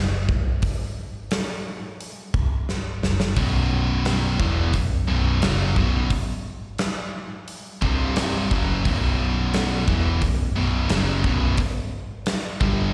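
Heard as a live gig through the venue's PA with a recital-hall reverb, this aggressive, driving hard rock fragment opens with a dark, round hollow-body bass and a punchy, up-front drum kit in a bright stone room, then after a drum fill at 2.7 seconds a crunchy overdriven guitar with slapback echo and a scooped, high-gain distorted guitar crash in together on the riff at 3.4 seconds, moving from B5 to C5 and Bm.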